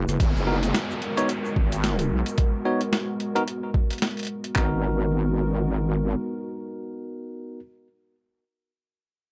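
Glitch hop at 110 BPM in G# minor with a 16th-note swing, this swaggering, funky excerpt from a longer piece sits on a G#m9 chord. A heavy, wobbling wobble bass with chorus and a moody, deep analog pad with sidechain pumping and 12-bit sampler grit open together, while an overdriven boom bap sampler-style kit brings a thumpy kick, handclaps, hi-hat, rim click and a medium-tuned snare, joined by a grainy egg shaker and an electronic downlifter. From 0.5 s a bell-like tine electric piano plays bright stabs through a low-pass filter, delay and sidechain pumping, and it, the pad and the wobble bass carry on after the drums stop at 4.7 s, all in light reverb.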